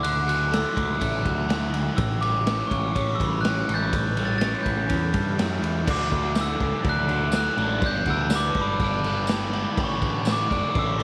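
Jangly and carefree, this indie rock excerpt moves at 123 BPM in a straight 4/4 in D major, cut from a longer piece. A bell-like glockenspiel played with soft plastic mallets carries the melody high above the band, its airy, ringing tone given a slapback echo. Beneath it, a double-tracked, compressed overdriven electric guitar plays a picked riff colored by a phaser, while a growling picked electric bass with its own overdrive anchors the low end. The raw garage drum kit sits up front with a punchy kick, a medium-tuned snare, crash and ride cymbals, and a dark, smooth, rolled-off top in a bright stone room. The harmony moves from Dadd9 to A7, then shifts at 5.9 s through D, G and Asus4, where a jingly, vintage-sounding tambourine joins in the background from 6.4 s. Light reverb and small room ambience give the whole band a close, lively setting.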